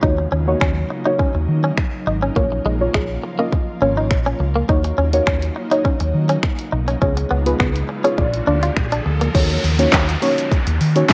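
This short cut from a longer dance-pop track has a worn, warbling old-tape sound with light digital ambience, its pitch drifting in a bittersweet yet driving haze. At 103 BPM in a straight 4/4 in Eb minor, a punchy, up-front electronic drum kit with a fat snare, kick, hi-hat, shaker, finger snaps, handclaps and crash cymbal drives the groove. A round, dark hollow-body fingered bass pumps against the kick, while a deep, nasal chord stab with a fast attack, filter sweep and chorus outlines the changes from Ebm7 to Bbm, Db7 and Bb. A bright, twangy, scooped clean guitar riff plays alongside an ethereal, detuned pad with slow attack and built-in reverb that sits in the background, both ending at 9.3 seconds. A riser and downlifter sweeps in at 6.6 seconds, and a crisp, distant group handclap appears very quietly from 9.6 seconds as the harmony returns to Ebm7.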